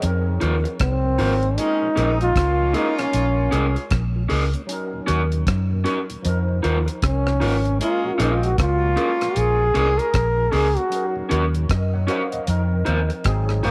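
A breathy, intimate trombone carries the melody with tape echo over this longing, bittersweet lovers rock reggae fragment, backed by a round, foam-muted electric bass up front, a dry, dark drum kit of kick, hi-hat and rim click, a barky, lightly overdriven tine electric piano with ensemble chorus, slightly broken-up lo-fi guitar stabs, a very quiet mellow tonewheel organ on slow rotary, and a distant, roomy horn section playing a second line from 1.6 to 10.1 seconds.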